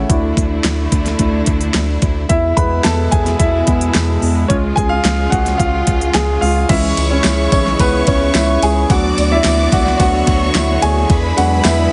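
An earnest, dramatic piano-driven pop passage at 109 BPM opens on an intimate, up-front grand piano with audible action noise and long sustain, over distant, lush string chords and a round, dark analog bass, while a produced, layered electronic drum kit with a knocking kick, fat snare and crisp hats drives a straight 4/4 pulse through chords moving from Dsus2 through E and C#. At 6.7 seconds the harmony turns to C#m, Bm and E7 as a smooth-topped violin section enters with a bowed, vibrato-rich second line, and a jingly, dry tambourine joins quietly in the background at 7.0 seconds. The mix carries a light small-room reverb and a heavily compressed, radio-style sound with nothing above 10.4 kHz, and the clip is cut from a longer piece.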